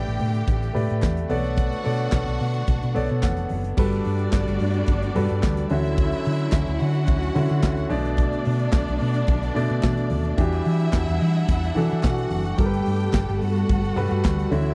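Danceable, joyful disco at 109 BPM in a dry, close 1970s-style studio sound, where a punchy, up-front drum kit with handclaps and crash and a dark, round hollow-body electric bass drive under a warm, intimate grand piano (with audible action noise and a fill at 2.7 seconds) amid lush extended chords, while a rich string section with tape echo carries a second line over clear background string chords, very quiet low-tuned congas and a crisp group handclap in this excerpt from a longer piece.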